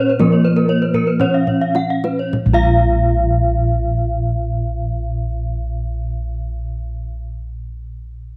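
Round, beating bossed gongs sit dry and up front in this brilliant, hypnotic fragment of Balinese gamelan, anchoring the bass beneath three bronze metallophones whose paired tuning sets up shimmering beats. A mid-forward, wooden-mallet metallophone carries the melody, while two horn-mallet metallophones spin arpeggios above it, one brilliant in tone and the other dark and smooth. A tight kendang in the background plays a fill from 0.9 to 2.3 seconds as the music slows, then drops out at 2.9 seconds, leaving the bronze to ring in a light, small-room reverb.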